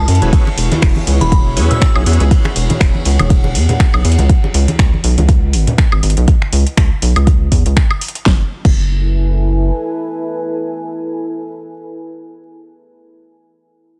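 Late-night and hypnotic, this deep house excerpt at 121 BPM in F# dorian rides a swung 4/4 groove, with an up-front, tape-warm electronic kick, a layered deep house kit with fat snare and metallic hats, compressed congas, and a soft brush kit with a dark, rolled-off top that drops out at 4.2 seconds. A rubbery, hollow square bass pumps under the kick while a glassy FM bell with phaser and delay, a bright, shouting tonewheel organ with slow rotary and key click, and a smooth, nasal analog pad sketch out the E69 chord before the harmony moves to C#m11. A deep, moody ambient pad carries on after the kick ends at 8.8 seconds, with the bass lingering until 9.7 seconds, settling onto F#m11 in a dense, heavily limited master.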